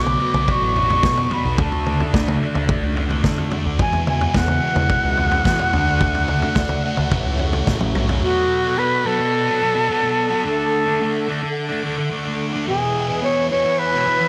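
An echo-heavy mix with light reverb frames this hypnotic, trippy psychedelic rock excerpt. An airy silver concert flute carries the melody with vibrato and analog delay, and a thick, bright, double-tracked fuzz guitar riff with phaser sits up front over mellow, chorused organ-string chords in the background. A growling, overdriven picked bass and a vintage drum kit with a punchy kick and rolled-off top drive the first part, ending with a drum fill from 7.7 seconds before both drop out at 8.2 seconds, leaving the flute, guitar and organ-strings to carry on.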